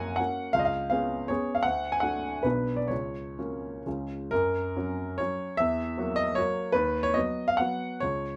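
Classical romantic piano music: a graceful, rustic triple-time dance in F# major, with dotted rhythms and a rubato pulse that moves between 124 and 171 BPM. A single grand piano plays solo throughout this 8.4-second fragment, spanning B1 to A#5, with harmony that passes from F# and C#7 through D and Bm, returns to F# by way of F#/C# and C#, then moves on through F#7/E to B/D#. The piano sounds warm, intimate and natural, placed up front in light reverb with its action noise audible.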